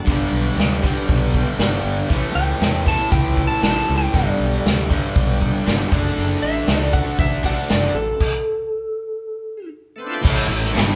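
Blues rock in the power-trio mold with a southern rock flavor, this short, driving cut from a longer piece moves in a straight 4/4 with a gritty, live-in-one-room feel and a moderate large studio reverb. A double-tracked, bright distorted electric guitar plays the riff up front over a growly, punchy fingered bass with fuzz and overdrive, while a vintage acoustic drum kit with dark cymbals, a medium-tuned snare and a punchy kick sits close with a rolled-off top. Beneath them, a very quiet tonewheel organ holds full, shouting, lightly overdriven chords through a slow rotary speaker with vibrato. At 2.4 seconds a dark, slightly broken-up, compressed lead guitar enters with a picked melody that runs until 9.7 seconds, and the harmony moves through G, A, G and D/F#. A stop from 8.2 seconds breaks the groove before the band lands on A at 10.2 seconds.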